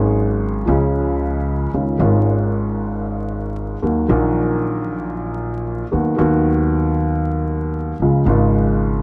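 Worn, warbling old-tape sound with vinyl crackle and a moderate studio reverb frames this melancholic, passionate tango excerpt in free time, where an intimate, up-front upright piano with audible action noise accompanies from G#1 to G#4 while a growly, thumpy pizzicato upright bass on steel strings holds the low end through chords moving from C#sus4 to D#m and B/D# before settling on C# at 8.0 seconds.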